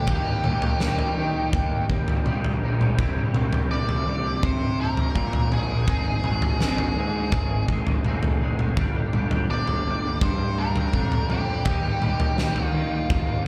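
Quiet-loud alternative rock with a cathartic, angsty mood, heard as a short cut from a longer live performance in a small club, coming through the venue's PA. A huge acoustic arena kit sits up front, its fat snare, punchy kick and toms pumping in a hall-like room. The fuzz-laden, picked electric bass growls with an overdriven, direct-and-amped bite, while a clean, twangy guitar plays scooped arpeggios treated with ensemble chorus and slapback echo. Over them, a dark octave-fuzz lead guitar carries the melody, its distorted tone trailed by slapback echo and analog delay. The harmony moves through Eb, C, Ab and Gm before returning to Eb at 11.7 seconds.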